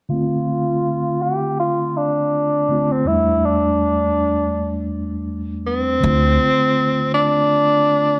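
Hip hop in D minor at 81 BPM with a swung sixteenth-note feel, reflective and melancholic, cut from a longer piece. A mellow tenor saxophone carries the jazz-style solo melody up front, played with subtone, light vibrato and scooped notes, softened by a low-pass filter and tape echo, while a clean tine electric piano plays the accompaniment through its built-in speakers with a cassette-tape haze, moving from Dm7 to A7sus4/E under a filter sweep until 6.0 seconds. There the harmony returns to Dm7 and a woody pizzicato upright bass on steel strings sounds a single low D from 6.0 to 6.4 seconds, all set in a moderate spring reverb.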